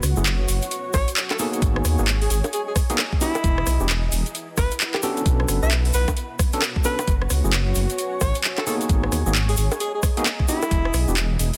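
A swung two-step UK garage groove at 132 BPM bounces on an up-front overdriven electronic kick, metallic hats, handclaps, bongos and rim clicks, with a grainy tube shaker in the background, a rumbling detuned saw bass and a blurred granular cloud pad pumping underneath, gritty tremolo electric piano stabs through delay, and a breathy, intimate alto saxophone carrying a soulful jazz-style melody from 0.9 s over a progression of mostly minor-ninth chords in this excerpt from a longer piece.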